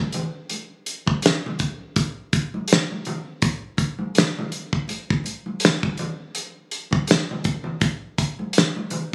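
R&B groove cut from a longer piece, soulful and warm at 82 BPM with a gentle sixteenth-note swing. An up-front acoustic soul drum kit of hi-hat, fat snare and tight kick carries the beat, its tone mid-forward with a rolled-off top, while ringing, medium-tuned congas struck with hard hands sit lower in the mix with a vintage, band-limited character. Light reverb and compression frame the pair, and the sound has the close, roomy feel of a phone capturing a small studio space.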